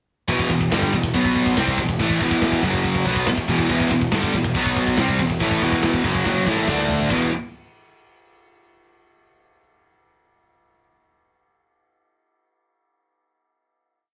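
A rough rehearsal-room recording with warm saturation and a small room's reverb carries this short, aggressive heavy metal piece in E minor at 141 BPM, where a scooped high-gain guitar up front, a dark double-tracked overdriven guitar and a bright distorted guitar in the background pick a power-chord riff from 0.3 s over a growly fuzz bass that doubles it in driving eighth notes and a tight metal drum kit whose fill at 6.3 s leads into a final chord ringing until 8.8 s.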